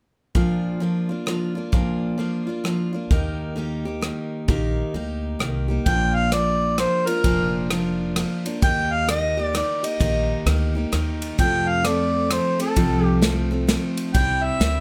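Closely miked with light reverb, this fragment of nostalgic, down-home honky-tonk and classic country sways in a swung three-four time, opening on a bright, full-bodied picked steel-string acoustic guitar and an airy studio drum kit with a punchy kick, ride cymbal, rim click and medium-tuned snare. A woody, growly pizzicato upright bass joins at 3.1 seconds, and at 5.9 seconds a mellow, distant harmonica takes up the solo melody in a classical style, sitting up front as the chords move from Bb and Eb through F to C.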